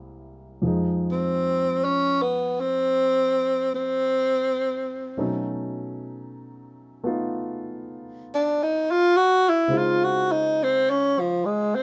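The recording has the sound of a band playing live in one room, with a light reverb around the players. This is a tender, romantic jazz ballad at a slow 53 BPM in 4/4 with a gentle swing on the eighth notes, tuned slightly high to A4 = 441 Hz. A warm baby grand piano opens the passage as accompaniment, sounding polished and present up front as it moves through C7b13, Fm7, Cb9 and Dbmaj7. At 1.1 seconds a breathy tenor saxophone enters up front with the melody, carrying the solo in a jazz style with vibrato, soft attacks and scooped notes. Both parts carry on together until the cut at 11.8 seconds, as this is a short section taken from a longer piece.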